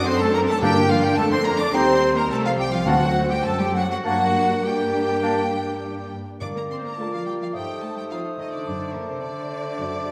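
Over an uneven, rubato 4/4 pulse, this dramatic, urgent classical-period movement for symphony orchestra rushes forward with a lush violin section carrying the melody, a very quiet, distant second violin line, and viola accompaniment set back in the mix. Mellow French horns hold sustained chords and a tight trumpet section adds soft-edged stabs until 6.1 seconds, while smooth cellos and expressive double basses anchor the bass. A hollow, airy silver flute, a bright clarinet and a clear bassoon add further lines, and round, soft-mallet timpani sound until 7.2 seconds, all in a recital-hall reverb.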